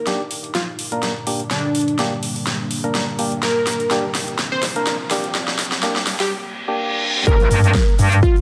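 Aggressive and gritty, this bass house excerpt in G minor at 125 BPM with a 16th-note swing spends its first 7.3 seconds on a build-up, where a catchy, detuned unison lead with tape echo carries the melody over a deep, moody pad pumping with the sidechain, hollow organ-like stabs under a filter sweep, and a big-room dance kit with a huge snare and metallic hats running a drum fill, while a riser and reverse cymbal sit in the background. At 7.3 seconds the drop lands with a punchy electronic kick and an up-front, saturated wobble bass with a bright, metallic FM bite, all held on a single G minor chord in a lush digital hall.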